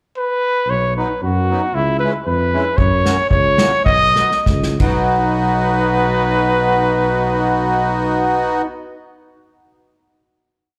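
Heard live through a club's PA with small-room ambience and a touch of reverb, this jolly, festive alpine folk dance piece in B major moves in a rubato 2/4 between 86 and 116 BPM. A mellow trumpet with light vibrato and slapback echo leads from 0.2 s with a classical-style, motif-based melody in period phrases, while a smooth-topped tuba plays root-and-fifth bass on the main beats and a reedy, sweet accordion with light tremolo tuning and slapback echo adds off-beat triad chords. An airy acoustic drum kit played with bundle sticks joins at 2.8 s with an oompah groove as the music slows, plays a short fill, and the band closes on a final hit at 5.1 s.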